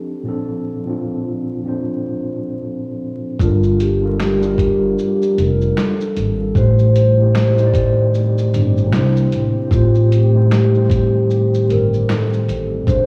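This nostalgic, melancholic lo-fi hip hop excerpt rides a lazy swung groove in 4/4, carried from 3.4 seconds by a dusty, sampler-style drum kit of thumpy kick, medium-tuned snare, hi-hat, shaker and finger snaps, compressed and gritty with 12-bit crunch and cassette tape wear. Before that, a mellow tine electric piano plays alone under a filter sweep, sitting up front through its built-in speakers with a low-pass filter and cassette coloring as it moves through jazzy chords from Bbmaj9 to Gm9. At 3.4 seconds the drums arrive along with a woody, growly pizzicato upright bass carrying transformer saturation, and a soft-mallet vibraphone that takes the melody with a ringing, metallic tone, slow motor vibrato, a low-pass filter and tape echo. From 5.2 seconds a deep, detuned sawtooth pad with a sub octave and chorus fills in sustained chords very quietly beneath, its slow attack and long release adding a moody haze as the harmony drifts through Am7b5 and C7. 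The whole piece has the feel of a home cassette recording, dusted with vinyl crackle.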